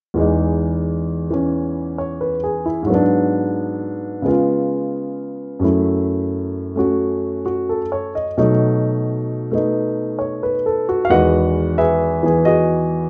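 A 4/4 swing at 88 BPM sets a swung eighth-note feel for this short solo jazz piece, which comes from a longer performance and carries a sophisticated, swinging mood. A grand piano plays alone throughout, reaching from E2 up to F#5, its tone warm, intimate and natural, with the soft clatter of the action audible in the up-front sound. The harmony moves from Emaj7 through G#m7b5, C#7, F#m7 and B7 across the opening section. It turns at 11.1 seconds to a closing section that settles on Emaj9. A moderate reverb from a large studio room gives the performance a sense of space, and the piece was captured live in a single room.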